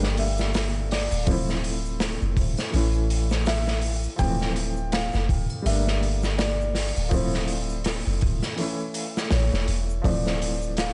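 A crunchy breakbeat kit sits up front in this dark, hypnotic trip hop excerpt, its saturated, gritty hi-hat, tight kick and medium-tuned snare carrying a rolled-off top. It moves at 82 BPM in 4/4 with a 58% swing on the sixteenths, in D minor tuned to A4 = 445 Hz. Beneath it, a soft, round 808-style bass with a fast attack and decaying tone holds the low end. An upright piano with a warm, woody, natural character and short sustain plays the accompaniment through tremolo and tape echo. From 0.2 s, a felt-muted upright piano carries a mellow, intimate melody in the background, its boxy tone and audible action noise also passing through tape echo, while a very quiet, close and dry egg shaker and triangle add detail. The harmony circles through Gmadd9, Dm7, A and Dm7 inside a studio reverb, and the sound stays dim at the top.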